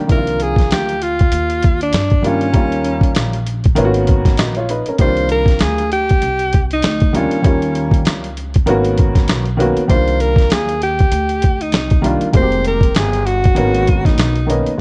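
Mellow and nocturnal, this jazz-hop cut at 98 BPM in C minor sets a clear, forceful alto saxophone melody with vibrato over a woody, slightly detuned upright piano, a thumpy pizzicato upright bass on gut strings, and a gritty, pitched-down, compressed boom bap drum kit with a medium-tuned snare and 12-bit sampler crunch, all moving through Cm11, Eb7 and Abm11 chords in a dark, small-room mix.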